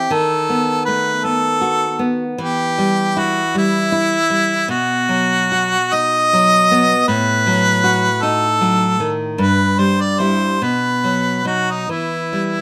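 A clear harmonica, up front and played in a classical style with vibrato, carries a solemn, elegiac melody through this 12.6-second cut from a longer romantic duo. Beneath it, a bright, fingerpicked nylon-string guitar with fresh strings gives classical accompaniment through B7/D#, Em, B and B7/A in a slow, rubato 6/8 of about 45-54 BPM in dotted quarters. The pair is tuned to A4 = 439 Hz and set in light reverb.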